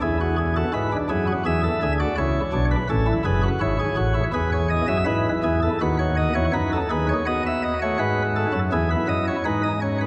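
In a straight 4/4 pulse, this stately yet lively excerpt from a baroque-style three-part classical fugue features a solo chamber organ whose sparkling, light, bright flute stops, voiced with a distinct chiff, sit up front for its 10.1 seconds against a lingering cathedral reverb with a 5.0-second decay.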